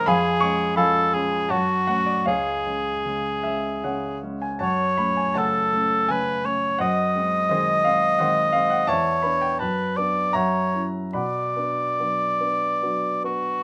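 In a rubato 3/4 at 70-88 BPM, this elegiac, solemn romantic classical excerpt sets a close-miked, up-front cor anglais singing the melody in F# minor over a short-sustain grand piano accompaniment, both heard together throughout in light reverb, before the harmony turns toward B minor at 8.9 s.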